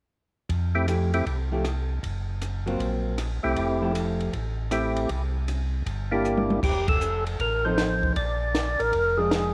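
Soul jazz organ trio music, swinging and soulful, cut from a longer piece with a light reverb around it. A mellow tonewheel organ carries the bass line from 0.5 seconds, round and clean with key click, vibrato and a slow rotary speaker. A compact cocktail drum kit enters at the same moment, a small-room acoustic set with a high-tuned snare, punchy kick, rim clicks, toms, hi-hat, ride and crash, its top rolled off to a smooth, dusky tone. The lead comes from a second tonewheel organ at 0.7 seconds, fat and lightly overdriven with third-harmonic percussion, vibrato, slow rotary and a slapback echo, sitting up front. A clean, fingered hollow-body electric guitar adds shadowy comping from 0.9 seconds, and a drum fill leads into a new section at 6.6 seconds, marked by a band accent as the harmony moves to bluesy dominant chords.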